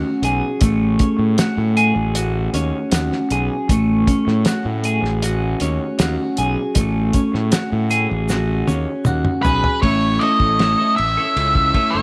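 A bright, twangy twelve-string electric guitar riff with phaser opens this hazy, trippy psychedelic rock excerpt at 78 BPM, quickly joined by a round, overdriven fuzz bass, a cloth-damped, thuddy drum kit with a fat snare and dark cymbals, and a grainy tube shaker in the background; the harmony rests on F#madd9/A until a drum fill from 8.3 seconds leads to a shift to A at 9.8 seconds, where a distorted octave-fuzz lead guitar with slapback echo, entering at 9.4 seconds, steps up front in a small, lightly reverberant room.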